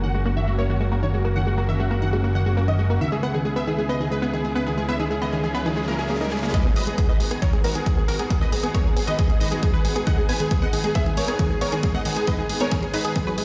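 Uplifting trance at 136 BPM in G# minor, emotional and driving, this excerpt sets a punchy, gritty supersaw stab melody with dub echo over a lush background pad, round chorused pluck arpeggios and a fat, thick sawtooth bass, all pumping with sidechain, as a filter sweep rides the pluck and a background riser at 4.5 s leads into a build-up at 6.5 s where a detuned unison pluck line, an analog hi-hat and an up-front punchy kick join, the whole heard through stone-room reverb from a big sound system in a bare room.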